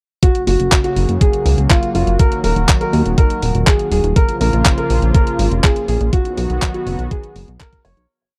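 Sunny and romantic, this short italo disco piece runs as a single verse over a straight four-on-the-floor groove. A dark, boxy concert grand piano carries a repeating riff melody with long sustain, set over a smooth sawtooth pad whose slow-attack chords are thickened by chorus. A thumpy, tape-warmed electronic kick sits up front, joined by a sampler-style drum machine beat of closed and open hi-hats and handclaps, both re-recorded in a small room. From 0.5 s a glossy, chorused synth bass gallops in sixteenth notes, its pulse-wave and ring-modulated tone shaped by a filter pluck with a fast attack. The chords cycle through F#, D#m, A#m and B, and the piece fades out from 5.5 s, with a dry, close 1970s-style studio sound touched by digital ambience.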